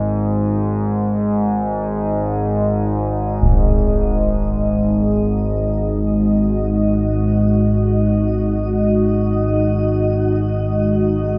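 This dark ambient drone piece feels cavernous and shadowy, drifting in free time through a passage cut from a longer work. A nasal analog drone sits low and up front from the very start, its sawtooth and pulse-wave tones evolving under pulse-width modulation and a coat of chorus. A deep, moody pad of detuned unison sawtooths with a sine sub octave fades in across the whole span, holding sustained chords higher up, softened by chorus, its own built-in reverb and a shimmer reverb. At 3.4 seconds a single close, dry stroke of acoustic concert bass drum lands, rounded off by a low-pass filter. A huge ambient reverb with a 7.3-second decay surrounds the sound, deepening the sense of a vast, dim space.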